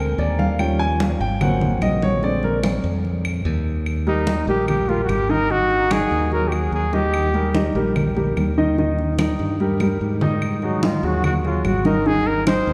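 A warm grand piano with audible action noise opens this sunny, lively Afro-Cuban jazz cut at 146 BPM over a growly, punchy fingered electric bass, joined almost at once by bright hard-hand congas and woody background claves, before a mellow trumpet with light vibrato and scooped notes takes the melody at 4.1 s, falls away before a drum fill at 9.8 s and returns at 10.6 s, the whole ensemble set in a resonant church acoustic.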